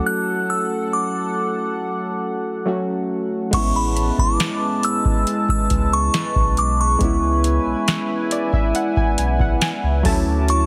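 A glassy, crystalline FM bell melody with chorus and delay opens this moody, longing contemporary R&B passage at 69 BPM, over round, detuned analog keys and a shimmering pulse-width pad moving from Dmaj7 to Amaj9 and C#m7, until at 3.5 seconds a booming analog drum machine with deep kick, crisp snare and metallic hats arrives with a warm sine sub bass and a very quiet, dark pluck, the keys adding a fill near 7.9 seconds, all in a dry, heavily compressed radio sound cut from a longer piece.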